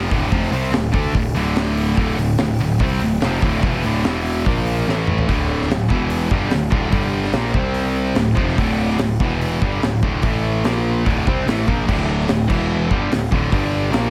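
Heavy metal in D minor at 145 BPM, this relentless, heavy excerpt drives a straight 4/4 with two bright, distorted, high-gain picked electric guitars playing the riff: one up front, the other scooped and sitting in the background. A fuzzy, growly overdriven picked bass anchors the low end, while an up-front acoustic rock kit with a punchy kick, high-tuned snare, hi-hat, crash and toms drives throughout and plays a fill from 4.9 to 5.3 seconds. That fill leads into a second section of shifting power chords, all set in a small room ambience.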